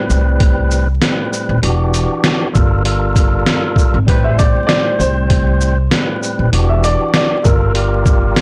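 Boom-bap hip-hop at 98 BPM in 4/4 with a 16th-note swing, this reflective, moody cut drifts through Am9, Em9 and Gm9 chords. A gritty, pitched-down sampler-style drum kit sits up front with a thumpy kick, medium-tuned snare, hi-hat and shaker, its compressed hits carrying the air of a large room. A woody pizzicato upright bass with transformer saturation anchors the low end, while a fat tonewheel organ with key click, light overdrive and a fast rotary speaker fills the accompaniment through a filtered, cassette-tape haze. At 4.1 seconds a very quiet, distant jazz-style horn section offers a brief roomy stab, and from 4.2 seconds a clear, boxy upright piano with short sustain takes the melody, colored by tape echo and filtering. The whole mix feels blown-out and overdriven, with vinyl crackle and a light reverb, as if lifted from a longer piece.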